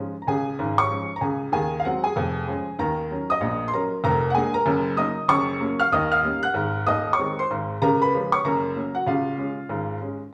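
Stride jazz with a playful, exuberant mood, this short cut from a longer piece swings at 191 BPM in 4/4 in Db major, carried by a solo upright piano that sounds clear, woody and vintage, placed up front and ranging from the deep bass to the high treble. The harmony moves briskly through Db, Ebm7, Bb7 and a run of dominant chords before settling back on C# near 9.1 seconds. A wet large-studio reverb gives the piano a live, roomy glow, as if played in one space with a band.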